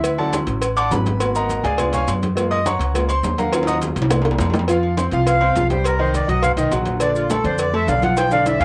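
A clear, intimate baby grand piano opens this sunny, danceable Afro-Cuban jazz excerpt with a cassette-tape tint and audible action noise, taking the lead over a woody, thumpy upright bass on gut strings. Underneath, saturated, compressed agogo bells and timbales ring out, tight high-tuned cowbell and bongos are played with soft hands, and ringing congas and grainy, mellow maracas sit in the background. At 5.3 seconds a reedy accordion with slow beating steps up front to carry the melody, also colored by cassette tape, and the light reverb gives the whole take the feel of a home recording.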